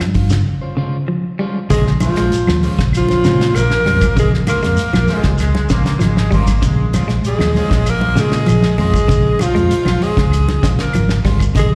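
Afrobeat at 97 BPM in Bb dorian, driving and defiant, cut from a longer piece and heard as a live gig through a venue's PA with recital hall reverb, as a dark, round fingered electric bass sits up front beneath a dry, damped 70s drum kit with a fat snare and tight kick, while a clean electric guitar picks tremolo-treated arpeggios in the background and a twangy, slightly broken-up guitar adds phased stabs. Grainy shekere, woody claves and very quiet, thick-skinned congas fill out the percussion, and after a break from 0.5 to 1.7 seconds a breathy alto saxophone takes the melody over a raspy, growling tenor saxophone second line, both with slapback echo. A brilliant trombone section briefly joins the second line from 5.1 to 7.1 seconds over a steady Bbm9 harmony.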